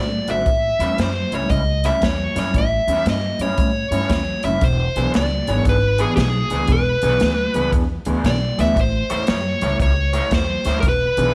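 A swung 4/4 shuffle at 116 BPM drives this swaggering, soulful electric blues cut, where a dark, overdriven lead guitar sings its melody up front over a twangy, slightly broken-up riff guitar with harmonic tremolo, a woody, thumpy plucked upright bass, and an airy, polished big-band drum kit with a punchy kick that enters at 0.3 seconds, all shifting between A7 and E7 in light studio reverb.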